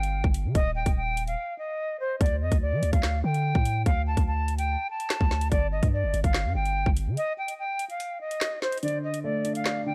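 Drill hip hop at 145 BPM in a half-time feel, ominous and menacing in D phrygian, pairs an airy, vibrato-laden jazz flute melody through a low-pass filter and digital delay with a deep, sine-toned 808 bass that stops at 7.2 s, a hard-clipped electronic drill kit of woody snare, metallic hats, handclaps and kick with breaks in the beat, and a dark, boxy grand piano that enters at 8.8 s on a D minor chord as the kick drops out, all in a small, dark room.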